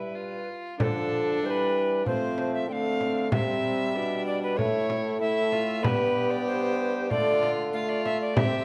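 A wet recital-hall reverb with a 1.5-second decay surrounds this short passage from a longer renaissance-style consort dance, played at 95 BPM in 4/4 with a straight feel in D dorian. The alto recorder carries the melody up front, its airy, woody tone bright with lifted highs, a gentle attack and vibrato. Beneath it, a single bowed violin plays a second line with a reedy gut-string tone and light vibrato in period style. A clear, present trombone supplies the accompaniment, and a mellow, vintage-sounding bassoon holds the bass with a touch of vibrato. A small frame drum joins at 0.8 seconds, played with soft hands and set up front with a small-room sound. The mood is solemn and courtly, with the harmony moving from G through Dm, F, C, A and G before returning to Dm at 7.1 seconds.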